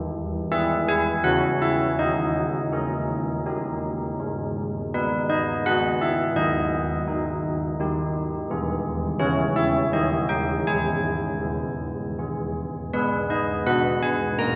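The recording places a set of old church bells up front in a moderate concert hall, and the reverb lingers for about 2.3 seconds around each strike. This is a solemn, wintry classical tune for church bells in G# minor, moving at 82 BPM in a steady 3/4. The bells play alone from 0.0 to 14.6 seconds, ranging from D#3 to A#5. Their dark, bronze, clangorous tone carries a minor-third overtone, the strike of an iron clapper, audible beating and a smooth ringing quality. The harmony moves from E through C# minor and a suspended D# before settling onto G#, then returns through E and C# minor to a D#7 that resolves on G# minor. A second section begins at 12.9 seconds, and the piece is cut from a longer work.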